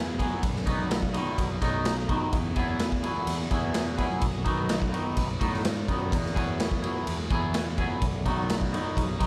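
A dreamy, reverb-soaked mix with a churchlike glow carries this hazy, trippy psychedelic rock excerpt, as chords alternate between B and Eadd9. Up front, a clean, twangy electric guitar plays a double-tracked riff through a phaser, over a fuzzy, overdriven picked bass, while a buzzing, shimmering tanpura drone hums in the background. A raw garage drum kit joins at 0.2 s with a boomy kick, a medium-tuned snare and ride cymbal, its saturated, gritty sound pumping in a bright stone room.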